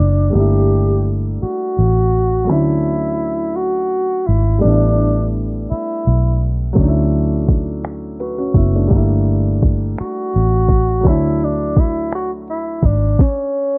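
A slow six-eight pulse at 56 beats per minute, counted in dotted quarters, sets a sensual, unhurried R&B mood in D major, in a short cut from a longer piece. A round, punchy muted electric bass sits up front from the start, alongside a clear, intimate grand piano whose action noise can be heard beneath its plate reverb as it moves through Gm6, Dmaj9 and A7sus4. With them a breathy tenor saxophone carries the melody with a mellow subtone, soft attacks, vibrato and scooped notes in a whispered, vintage jazz style. At 6.8 s an electronic drum kit enters with finger snaps, a soft kick, a sharp snare and warm hi-hats, while the saxophone pauses and returns at 10.0 s. The production is dark and filtered, with light reverb overall, giving the whole passage a close, late-night glow.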